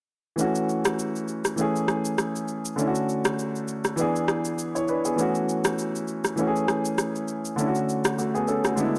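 A clear, polished grand piano sits up front, comping mellow, smooth afrobeats chords at 100 BPM with a gentle 16th-note swing in F# minor, cycling F#m7, Amaj7, Dmaj7 and E7 from 0.4 to 9.0 s over an up-front electronic shaker and rim click, all captured in a dry, gritty recording with transformer saturation, light reverb and small room ambience in this short cut from a longer piece.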